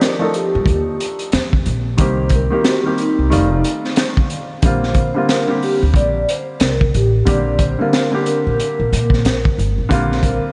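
A crunchy, gritty breakbeat kit with a punchy kick and high-tuned snare lays down a swung 91 BPM groove in 4/4 for this smooth, cool jazz-hop excerpt in Bb major. From the start it is joined by a worn, up-front baby grand piano and a mellow vibraphone melody played with soft mallets, motor vibrato and diffuse ambient delay. Woody, growly pizzicato upright bass enters beneath them at 0.6 s. It is all set in a dreamy mix soaked in lush hall reverb over chords moving from Ebmaj9#11 through Cm7 and F13 to Bb69.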